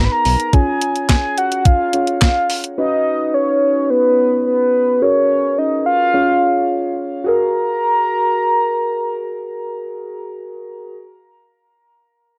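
A dark, close-sounding synth-pop fragment in F# major at 107 BPM, bright yet wistful, in which a round, horn-like synth lead with chorus, tape echo and vibrato carries the melody over soft, muted felt-like keys with a noisy, decaying edge, while a thumpy, overdriven 12-bit drum machine with handclaps, hi-hat, kick and snare plays only from 0.3 to 2.8 seconds.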